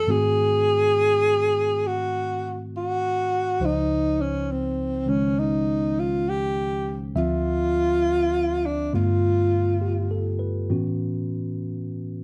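Jazz ballad in an intimate, tender mood, moving in a slow 4/4 with a gentle swing on the eighth notes and tuned slightly below standard pitch. A breathy alto saxophone carries the melody up front in a solo jazz style, its close-miked subtone tone carrying vibrato and an airy warmth. A clean tine electric piano, heard through its built-in speakers, supplies the accompaniment and stretches from deep bass notes up into its upper register. The harmony moves through rich extended chords, from G#7b9 to C#maj9 and then Dm7 to G9, before settling on A69 as a new section begins at 10.7 seconds. The saxophone drops out at 10.4 seconds, leaving the electric piano alone until the cut at 12.2 seconds. A moderate studio reverb surrounds both parts, and the piece is cut from a longer performance.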